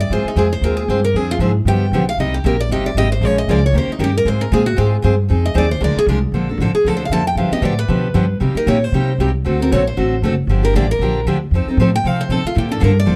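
A boxy parlour guitar with fresh strings opens this short cut of charming, swinging acoustic string swing in the jazz manouche style, its picked solo line running from the very start, while a pizzicato upright bass with gut strings sounds a woody, thumpy pulse beneath it. At 0.1 s a full-bodied dreadnought guitar joins as the picked accompaniment, and all three parts sit up front in a dark-toned mix with light reverb. The solo guitar carries the lead across two passages built on the same material, the first resting on chords such as Ab6, Dm7b5, G7 and Cm7. From 6.3 s the harmony settles around Bbmaj7, cycling through G7, Cm7, D7, Gm7 and F7 before returning to Bbmaj7. The bright, picked guitars and the lively swung eighths give the performance a light, buoyant charm.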